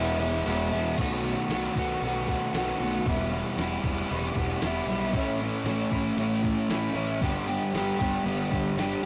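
Dreamy and blissful, this short excerpt of shoegaze-tinged rock and dream pop moves at 115 BPM in a straight 4/4, opening on a one-second break on E before settling into a passage that runs through B7, Em, A and G. An overdriven, double-tracked semi-hollow guitar sits up front with a picked riff, over a growly fuzz bass played with the fingers, while a clean 12-bit drum machine enters at 0.5 seconds with a thumpy kick, fat snare, hi-hat, ride and crash. The rough rehearsal-room sound carries saturation and a moderate stone-room reverb.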